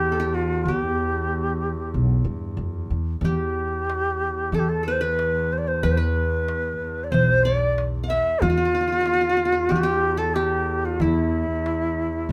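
Arabic maqam ensemble music in E bayati at 93 BPM, soulful and hypnotic, tuned to A4 = 436 Hz and cut from a longer piece. An up-front, breathy end-blown ney carries the melody with vibrato and a reedy bite, while a plectrum-plucked qanun with bright-edged triple strings plays a second line alongside it. A growly pizzicato upright bass and a close, bowed double bass holding an airy gut-string drone on E2 anchor the ensemble in moderate studio reverb, and a crisp metal-shell darbuka played with hard hands joins at 3.2 seconds.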